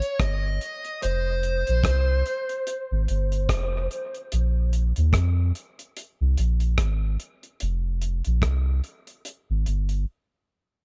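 An echo-heavy, nearly reverb-free mix opens this hypnotic, meditative dub reggae excerpt, where a dark, overdriven electric lead guitar picks a brief melody until 3.9 seconds over a dry 70s drum kit of hi-hat, tight kick and rim click, while a deep, round sub bass sits up front through the F5 and Bb5 changes before everything drops out for a short break at 10.1 seconds.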